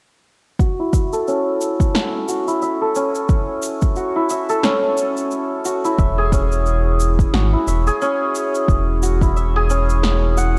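Dark, lightly reverberant production frames this earthy, mystical organic downtempo excerpt at 89 BPM in F# minor with a swung 16th feel: an up-front, shimmering hammered santur plays ringing arpeggios through a low-pass filter sweep and digital delay, a deep, overdriven electronic kick and a fainter layered shaker with a punchy snare carry the groove, and a round sine sub bass enters up front at 6.0 s as the harmony moves from F#m7 to E, with the kick dropping out at 9.3 s.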